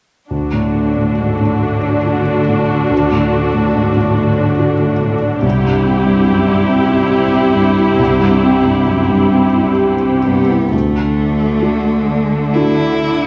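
Cinematic and tender, this short, hopeful passage unfolds in a rubato 3/4 at roughly 62-72 BPM. A felt-muted upright piano sits up front with a soft, mellow, intimate tone, its hammer action audible as it accompanies throughout. A viola section adds a focused, lush layer of bowed vibrato until about 10.5 seconds, while a rich cello section holds the low end with a smooth, even, more distant sound. The harmony moves from D to C and back to D at 10.7 seconds. At 10.3 seconds a solo cello takes up the melody, played bowed with expressive vibrato, gentle attacks and portamento slides. The whole is heard from further back in a scoring stage, its generous reverb giving the strings a spacious halo.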